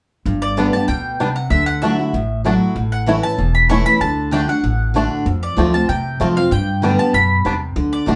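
Bluegrass at a driving 192 BPM in straight 4/4, this joyful G major fragment runs for about eight seconds, cut from a longer piece and played live by a band in one room with a wet studio ambience. A full-bodied, picked dreadnought steel-string guitar sits up front as accompaniment from 0.3 seconds, joined at once by a woody, thumpy pizzicato upright bass on gut strings. The mandolin takes the melody from 0.4 seconds, its double strings bright and close, high in its register. At 0.6 seconds a twangy, percussive banjo played with fingerpicks adds arpeggios in the middle range. The chords move from G through Dadd9, A, D and F before landing back on G.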